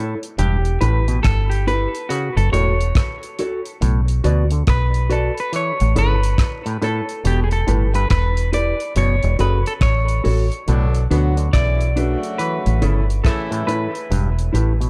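Roots reggae in B minor at 70 BPM with a 16th-note swing, this serious, hypnotic cut from a longer piece rides a chord cycle of Em, F#m, Bm and A, anchored by a deep, round, foam-muted fingered bass sitting up front with a dry, tight-kicked 70s drum kit of hi-hat, kick and rim click. A mellow, compressed electric guitar with dub echo and a stringy, percussive auto-wah clav playing arpeggios fill the accompaniment, while a hollow-bodied semi-hollow guitar carries the clean melody through spring reverb and dub echo, soloing until 10.7 seconds. At that point a distant, punchy horn section with light vibrato and octave doubling adds a dub-echoed second line until 13.9 seconds, all within a dark, warm production.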